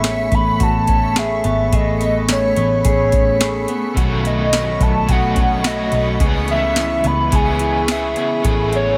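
Ethereal and dreamy, this dream pop fragment drifts over a booming analog drum machine with a deep kick, crisp snare, metallic hats and tambourine, while a dark, foam-muted picked bass holds down the low end and a slightly broken-up electric guitar through a small old amp plays arpeggios beneath a blurred, evolving granular cloud pad. On top, a warbling, nostalgic lead synth carries the melody through chorus, tremolo and tape echo, and at 3.9 seconds an overdriven semi-hollow guitar joins as accompaniment with its own tremolo and analog chorus. Shimmer reverb trails the lead, pad and both guitars, and a lush hall reverb surrounds the mix as the chords move from Amaj9 through B9 and C#m7 and back to Amaj9.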